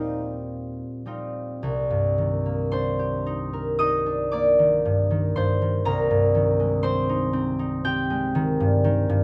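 Pastoral and luminous, this short fragment of a longer classical work is an impressionist duo for alto saxophone and concert harp, moving in a rubato 4/4. The alto saxophone, clear-toned with a light classical vibrato, sounds only briefly as the melody voice, holding an Eb4 from 0.0 to 0.5 s. The concert harp carries the accompaniment throughout, fingerpicked and ringing, sitting up front in the mix and spanning from C2 up to Eb6. Its harmony drifts from an opening Eb69 into Cm9 at 1.6 s, then settles onto Abmaj7/C at 5.9 s. A light reverb gives the acoustic duo a soft sense of space.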